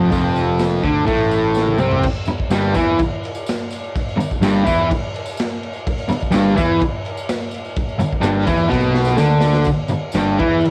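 Rowdy and swaggering, this garage rock excerpt drives along at 125 BPM in a straight 4/4, with a double-tracked fuzz guitar riff sitting bright and up front over a punchy, overdriven picked electric bass, moving from an F5 chord to G at 2.0 seconds and landing on Em/G at 9.7 seconds. A raw, saturated drum kit with dark cymbals, a gritty pumping room sound and a rolled-off top pushes the groove, adding fills at 1.5 and 8.7 seconds. A jingly tambourine sits in the background, and the whole piece has the cramped, light-reverb feel of a small-room home cassette recording.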